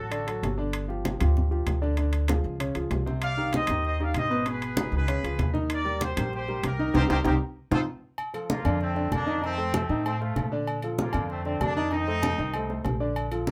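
Heard in a small, moderately reverberant room, this festive, danceable salsa excerpt at 193 BPM in Bb major rides on a woody, thumpy pizzicato upright bass up front, low-tuned damped congas, and ringing, close timbales with agogo bells, while a worn concert grand piano with short sustain accompanies throughout and a punchy trumpet section with light vibrato carries the melody, briefly at the start and then from 3.2 s, before a band accent topped by a drum fill at 7.3 s leads into the next section.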